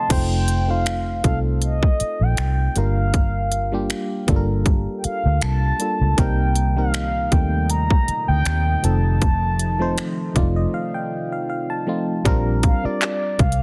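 A dense, heavily limited modern master with digital ambience frames this smooth, romantic slice of contemporary R&B, cut from a longer piece and riding a lightly swung sixteenth-note feel in 4/4. Up front, a produced electronic trap drum kit with a hard-clipped kick, crisp hats, finger snaps, handclaps, crash cymbal and soft clipping on the snare sits beside a dark, round, amped and foam-muted vintage fingered electric bass. A mellow, horn-like synth lead with a sawtooth core, soft attack, vibrato, chorus and delay carries the melody over an FM electric piano whose fast-attack, decaying notes carry a noise layer. A shimmering, retro pulse-width pad with detuned, ring-modulated colour and a moving notch sits in the background, returning at 6.2 seconds to hold sustained chords until 12.2 seconds. The electric piano plays a fill from 10.0 seconds, and the arrangement breaks at 10.7 seconds, before the harmony comes to rest on a Bb69 chord.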